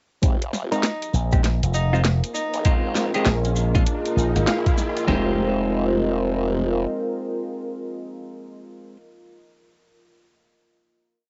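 A lo-fi home cassette recording in a small booth, dulled at the top, carries this short, funky and gritty glitch hop piece at 99 BPM in F minor, swung on the sixteenths and moving from Fm7 to Bb7sus4 before settling back on Fm7 at 5.1 seconds. Up front, a compressed, pitched-down boom bap sampler kit with a thumpy kick and a drum and bass kit with a cracking, overdriven snare and bright hats drive the beat. Alongside them come mellow maracas, a pulse-wave formant-sweep wobble bass with changing wobble speed, and clean, scooped electric guitar stabs in rootless voicings, with filter sweeps on the guitar and a moody square-and-saw analog pad through the build. A punchy envelope-filtered slap bass joins at 1.1 seconds and an electronic riser at 1.3 seconds. A reverberant, slowly shifting ambient pad enters at 1.7 seconds and carries into the final chord, while a vintage tenor saxophone plays short jazz phrases with vibrato.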